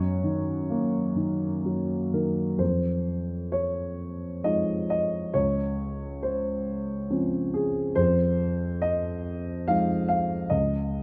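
A dark, worn grand piano carries this short classical excerpt alone, sitting up front with a mellow, slightly boxy tone and long sustain. The solo writing is lyrical and tender, moving in a gentle three-beat metre with a free, rubato feel. The harmony opens on Ebm7/Gb, and at 2.6 seconds a new section begins, drifting through Fm7 and Dbmaj7 before returning to Fm7. The piano spans a range from its low bass up into the upper middle register, giving the phrases a warm, rounded body. Close, detailed microphones capture the instrument intimately, while a moderate concert hall reverb lends a soft halo. The passage is cut from a longer piece and breaks off shortly after 10.5 seconds.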